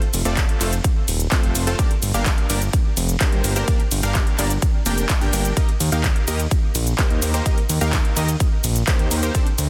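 A detuned sawtooth supersaw stab and a big-room dance drum kit of cabasa, handclaps, metallic hi-hat and ride cymbal open this euphoric, powerful festival progressive house excerpt at 127 BPM in a straight 4/4. A fat, thick analog bass arrives at 0.1 seconds, its sawtooth tone pumping against the sidechain and sitting up front with a fast attack, a filter sweep and a decaying tail. At 0.4 seconds a punchy, layered electronic kick lands up front, dressed like the drum kit in studio reverb. The stab carries the riff with a plucky filter and fast attack, pumping under sidechain and trailing tape echo, while the harmony moves from F to Gm and then to Eb. The dense, heavily limited modern master sits in a digital ambience across the whole section.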